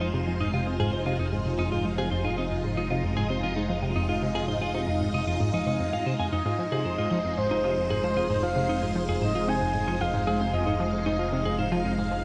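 A tight, driving sequenced synth riff sets a straight 4/4 pulse at 114 BPM, its detuned sawtooth and square-wave tone plucked by a filter and treated with chorus and tape echo. This short excerpt of ambient, sequencer-driven space music sits on a single Fm7 chord in F minor, and the mood is cosmic and mysterious. A fat analog bass holds a low F1 beneath it, thick and wave-folded with a filter sweep, while a vintage string machine sustains bright, swirling chords up front through ensemble chorus and phaser. A clean, compressed electric guitar picks arpeggios that ring out in tape echo until 11.9 seconds. At 6.3 seconds a breathy, flute-like synth lead enters with a soft attack and vibrato, its sine and triangle tone carrying a noise layer and sub octave as it sings a melody between C5 and Ab5. A huge, wet reverb with a long 7.3-second decay surrounds the whole mix in deep space.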